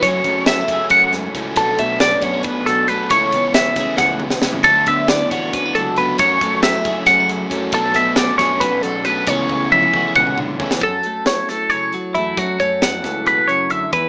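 A phaser-tinged twelve-string electric guitar, twangy and up front, rings out bright arpeggios over a second clean twelve-string guitar's accompaniment, a double-tracked crunchy overdriven riff guitar that drops out at 10.8 s, a growling overdriven fingered bass, and a crisp fusion kit with a high-tuned snare and tight kick that plays fills at 4.0 and 9.5 s, all driving a playful, bright math rock and midwest emo passage in 7/8 at 273 BPM through lush chords like F#m9 and Bm11 in a rough, lightly reverberant home-demo mix with a small-speaker sound.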